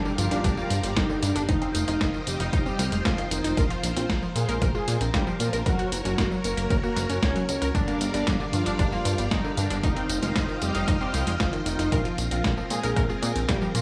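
A small, lightly reverberant digital room frames this nostalgic, melodramatic italo disco passage at 115 BPM in F dorian, cut from a longer piece and cycling through Gm7, Bbsus2 and Gb. A fat, brassy analog synth brass with chorus, vibrato and tape echo carries the melody over bright, lush string machine chords with ensemble chorus and 12-bit sampler grit, while a warbling, detuned unison pluck plays tape-echoed arpeggios. Beneath them, a glossy chorused synth bass, a punchy tape-warmed electronic kick and a detuned 8-bit drum machine with hi-hat, snare and tambourine drive the groove, and a very quiet electronic impact marks the opening 1.5 seconds.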